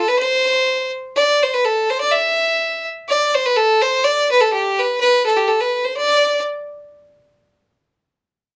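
A single bowed fiddle carries this short Celtic folk passage, its rich, intense tone shaded with light vibrato and placed up front in the mix. The playing sits between G4 and E5 at 125 BPM in 2/4, with a gentle swing of 55% on the eighth notes that keeps the feel driving and lively while the mood stays dark. The fiddle plays alone from the start until 6.4 seconds, and the passage runs to 6.9 seconds. Close, detailed microphones catch the player's sound, framed by light reverb, while the fiddle's tone itself carries a distant quality. It is cut from a longer piece.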